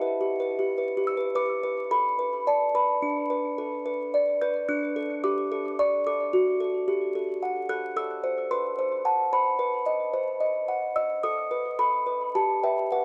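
A classical lullaby in 3/4, this short fragment feels fragile and eerie, carried entirely by a solo music box that sits up front from 0.0 to 13.0 seconds. Its delicate, tinkling plucked tones are mellow and smooth, with a small-box character and a touch of tape echo as the harmony drifts from minor chords toward a B7 and settles on Em/G. A small room's ambience and vinyl crackle wrap it in a dark, warm production.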